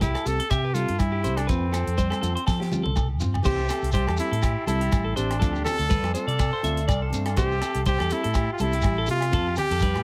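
A clear, close-miked trumpet leads this warm, danceable highlife guitar band excerpt from the start, playing the melody up front in a jazz style with light vibrato and scooped notes. The tempo is 122 BPM in 4/4 with a gentle sixteenth-note swing in C major. Beneath it, a round, punchy fingered electric bass and a dry, polished funk drum kit with a high-tuned snare and tight kick carry the groove, while congas, a grainy shekere and ringing agogo bells sit in the background. A clean, twangy electric guitar plays compressed, picked arpeggios through phaser and tape echo, and a bright, full-bodied nylon-string guitar adds fingerpicked accompaniment over chords that move between C6, F and Dm7. A drum fill from 2.5 seconds leads into a new section at 3.4 seconds, and at 3.5 seconds a very quiet, lightly overdriven tonewheel organ enters with sustained chords, its slow rotary speaker and key click audible, as the band sits in light reverb.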